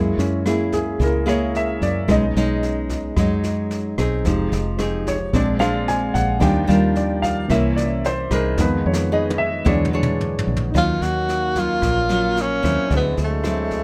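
Melancholic and wistful, this bossa nova fragment opens with an intimate concert grand piano solo, its action noise audible, over fingerpicked nylon-string guitar with finger squeak, a round, dark fingered electric bass and a brushed jazz drum kit with a boomy kick that plays a fill from 8.6 seconds, before a breathy, vibrato-laden tenor saxophone takes the melody up front at 10.8 seconds with a gritty, growling trombone in the background, under light reverb.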